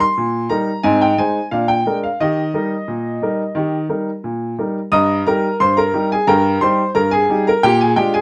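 Ragtime piano in Eb major at 89 BPM in a straight 2/4, this lively, playful clip from a longer piece features a solo upright piano, clear and woody with a vintage character and long sustain, sitting up front in light reverb as it moves from an opening passage to a new section at 4.9 seconds, ranging from G2 to Eb6.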